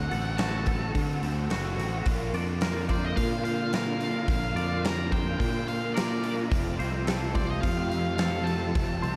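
A straight 4/4 pulse at 108 BPM drives this brief, dreamy and brooding slice of shoegaze and dream pop rock, cut from a longer piece and soaked in a plate reverb. A huge arena drum kit, up front with a punchy kick, a medium-tuned snare and hi-hat, comes in at 0.1 seconds over a growling fingered bass that sounds bright and overdriven and has been playing from the very start. Two guitars carry the riff: an overdriven one, dark and compressed with ensemble chorus, and another through a small old amp, slightly broken-up and sitting in the background under reverse reverb. Above them a clean, scooped twangy guitar plays arpeggios through analog chorus and diffuse ambient delay, while an octave-fuzz lead guitar sings a dark, distorted melody between D5 and Bb5, also trailing ambient delay. The harmony moves from D7 to Bbadd9 at 2.1 seconds and settles on F at 6.5 seconds.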